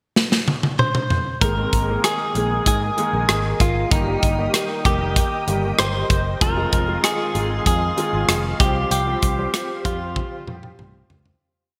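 Bright 1980s-style digital production bathes this short, dramatic and urgent pop piece in lush hall reverb, moving at 96 BPM in straight 4/4 through Absus2, Eb, Fm7 and Csus4 chords. A punchy studio drum kit with gated reverb and a big backbeat opens with a fill at 0.2 s, and a clean, compressed electric guitar with subtle chorus arrives up front at 0.8 s with hook-like motifs. From 1.4 s a round, dark fretless bass adds a syncopated pop-funk line with chromatic approach notes and a clear baby grand piano plays syncopated drop-2 chords with grace notes under ensemble chorus, soon joined by a silky, slow-attack string machine pad with phaser, before a closing drum fill and fade-out.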